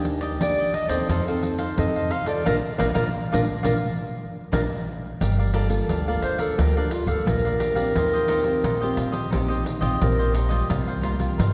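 Heard through the lush, lingering reverb of a church, this joyful, festive samba and choro excerpt pairs a bright, crisp picked cavaquinho with a fingerpicked classical nylon-string guitar and a woody pizzicato upright bass up front. A close, dry, jingly pandeiro drives the groove as a smooth-topped, warm classical clarinet carries the melody from 0.4 seconds. The band hits accents between 2.5 and 5.2 seconds before the clarinet takes a solo from 5.2 seconds as the harmony turns to a minor colour.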